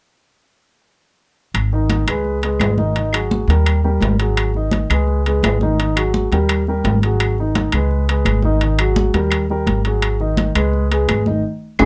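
A driving 4/4 groove at 170 BPM sets this short Afro-Cuban jazz excerpt in motion, with upright bass and timbales arriving at 1.5 seconds, joined almost at once by claves and congas. The sultry mood rests on a G# minor vamp that circles between G#m, G#5, G#m7 and C#5 chords. Up front, the pizzicato upright bass has steel strings and a dark, woody tone, holding to a low register between G#1 and D#2, while a warm concert grand piano with deep bass and long sustain comps from D#3 to D#5. The percussion sits in a small room, where ringing metal-shell timbales and bright, thin-skinned congas ride over woody claves tucked in the background. A band accent lands at 11.4 seconds before the excerpt breaks off, all captured in a rough home demo mix with light reverb.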